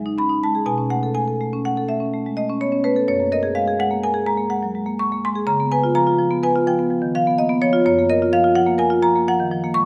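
Flowing and playful, this short excerpt from a longer contemporary classical piece features a solo marimba played with medium hard mallets. The music moves at 126 BPM in 5/4 with a rubato feel, and the instrument is tuned to A4 = 441 Hz. Spanning a range from E2 to C#6, the marimba sounds warm and mid-forward, placed up front in the mix. It sits in a wet recital hall with a 1.6-second reverb tail. The harmony drifts through Emaj7, Bsus2, F#add9 and C#9 before settling on F#maj9 at 7.9 seconds.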